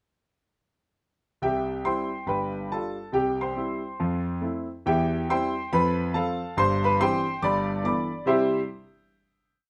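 A clear, worn grand piano carries this short, exuberant stride jazz piece alone from 1.4 to 8.6 seconds, with the tune in filled octaves over a swinging stride bass. The natural, up-front piano sits in a moderate studio reverb as the harmony moves through a bright major progression before settling on a final chord at 8.3 seconds.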